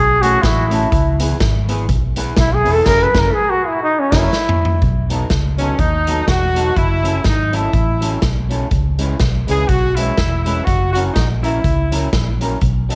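Bathed in moderate spring reverb and small-room ambience, this driving, mischievous swung ska excerpt opens with a punchy, scooped trombone solo through tape echo over a dark, foam-muted bass with transformer saturation, a twangy, slightly broken-up guitar with subtle chorus, and a boomy, airy street-band drum kit whose fill runs up to 4.8 seconds, before a loose, vibrato-laden horn section takes over the melody from 5.6 seconds.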